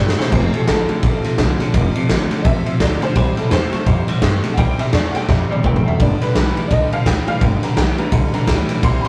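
A rough rehearsal-room recording with tube saturation and light reverb frames this rollicking, upbeat rockabilly excerpt at 169 BPM, swung on the eighths and moving from F to C to G. A detuned, jangly honky-tonk upright piano takes the lead throughout, over a thumpy, gut-strung pizzicato upright bass, a twangy, compressed clean electric guitar riff with spring reverb sitting in the background, and a very quiet, full-bodied picked dreadnought acoustic guitar. The gritty, punchy garage drum kit sits up front with a rolled-off top, kicking off with a fill at 0.0 seconds and adding another at 5.3 seconds.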